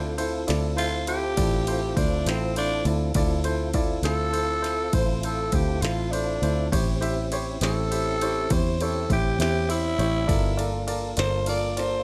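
A growling tenor saxophone takes a raspy, gritty solo from the very start, with scooped notes and light vibrato, over a smoky, soulful slow blues in D minor at 67 BPM in 12/8, the harmony moving from Dm7 to A7#9 at 6.7 seconds and Gm7 at 10.3 seconds. A woody upright piano accompanies, a lightly overdriven tonewheel organ holds sustained chords in the background through a slow rotary speaker with key click, and a round, foam-muted fingered electric bass sits up front. A glitchy electronic drum kit with a deep kick, tiny snare and ride cymbal enters at 0.2 seconds, all in a dry sound in this excerpt cut from a longer piece.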